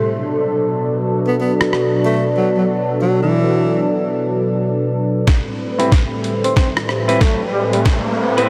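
Gritty and playful, this glitch hop fragment moves at 93 BPM with a swung 16th-note feel in A dorian, opening on a Bm7 chord from a smooth, detuned sawtooth analog pad and a dark, warbling lo-fi tape-like pad, both chorused and pumping under sidechain. A close-miked tenor saxophone with light vibrato enters at 1.3 seconds through a low-pass filter and tape echo, joined by a pitched-down, compressed boom bap sampler-style kit of hi-hat, rim click and snare. At 5.3 seconds a thumpy, up-front electronic kick arrives as the harmony shifts to Am9 for a build-up with a drum fill and filter sweeps on guitar and saxophone. Picked clean electric guitar stabs join at 5.8 seconds and an electronic riser at 6.4 seconds, pushing toward the finish inside a dreamy, reverb-soaked mix.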